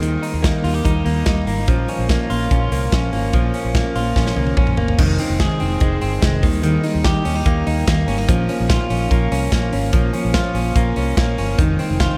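Wistful and bittersweet, this short cut from a longer jangly indie pop piece moves in a straight 4/4 through a dreamy mix soaked in a huge ambient reverb. A clean electric guitar, recorded direct and compressed, sits up front playing arpeggios through a delay, while a full-bodied jumbo steel-string acoustic guitar is fingerpicked further in the background. Underneath, a vintage fingered electric bass gives a dark, round, foam-muted tone. The acoustic studio drum kit is mid-forward and up front, with bright cymbals, a medium-tuned snare and a punchy kick, and it plays a fill from 4.2 to 5.0 seconds that leads into the second section. The harmony moves among Eb, Bbm and Fm7, and all four parts play together from the opening moment to the end.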